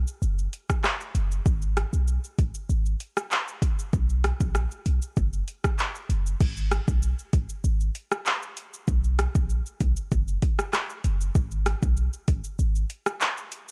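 Dancehall with a hypnotic, sultry mood, cut from a longer piece, in which a deep, boomy, sine-toned 808-style bass with a fast attack and decaying notes sits up front beside an electronic afro-pop kit of deep kick, metallic hi-hats, handclaps, rim clicks, shaker and crash cymbal, set in digital ambience with a dry, gritty hardware sound, the bass stopping at 12.8 seconds while the drums carry on to 13.7 seconds.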